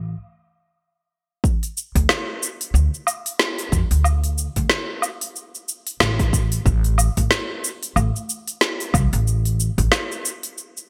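A plucked upright bass with steel strings sits up front, its woody, warm tone setting a meditative, mystical mood in this organic downtempo piece, which is cut from a longer work. After a stop that runs from 0.1 to 1.4 seconds, an afro-pop drum kit and a deep electronic kick enter together at 1.4 seconds; the kit brings cabasa, woodblock, crisp hi-hats and a woody snare, all treated with gated reverb, over a swung 16th-note feel. Light reverb and small-room ambience frame a bright, 1980s-style digital production, and the bass drops out at 9.9 seconds along with the kick.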